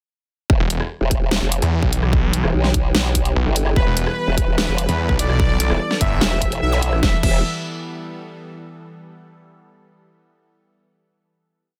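Heavy wobble dubstep in E minor at 147 BPM with a half-time feel, menacing and aggressive, built as a short drop from 0.5 seconds that gives way to a final chord at 7.0 seconds. A punchy electronic kick and an up-front dubstep kit with a huge snare, closed hi-hat, rim clicks and crash sit beneath two basses: a formant-filtered wobble bass with chorus and shifting wobble speeds, and a growling, detuned sawtooth bass with distortion that plays chopped phrases answering it. Behind them an evolving, morphing wavetable pad holds bright chords with phaser and sidechain pumping, a smooth supersaw with delay enters at 3.8 seconds with a repeating riff, and a very quiet zap flickers past near the end, all in a dense, heavily limited, dry mix.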